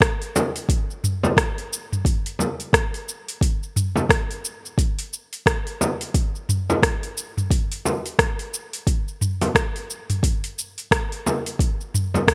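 A hypnotic downtempo groove at 88 BPM with a swung sixteenth-note feel opens on a deep, tape-warm electronic kick and an up-front afro-pop kit of metallic hi-hats, rim clicks, shaker and toms, both set in small room ambience, before a vintage, band-limited acoustic frame drum joins at 0.4 seconds, all under light reverb in this warm percussion-only fragment cut from a longer piece.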